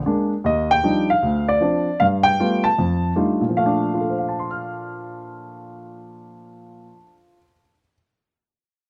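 A dark, mellow baby grand piano opens this short solo jazz excerpt at 0.1 seconds, swinging its eighth notes at 154 BPM in 4/4 with a playful mood in B-flat major. Spanning from low D2 up to F6, the piano moves through rich chords such as Ebmaj9, Dm7, G9 and F13 before settling on Bbmaj7 at 3.5 seconds, its natural tone sitting up front. Close, detailed miking and little reverb keep the sound intimate and dry until the piano stops at 7.9 seconds.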